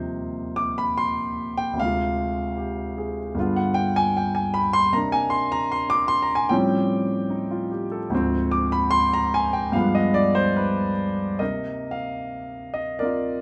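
Swung eighths in 4/4 drift with rubato around a slow 74 BPM in this moody, late-night solo jazz fragment in C minor, cut from a longer piece. A warm, intimate grand piano sits up front and plays alone from 0.0 to 13.4 seconds, ranging from D2 to D6, its long sustain and audible action noise caught naturally in a moderate studio ambience. The harmony moves through Eb69, Dm7b5, G7, Cm9 and A7alt, then Dm7b5 and G7b9, before settling on Cm9 at 11.4 seconds as a new section begins.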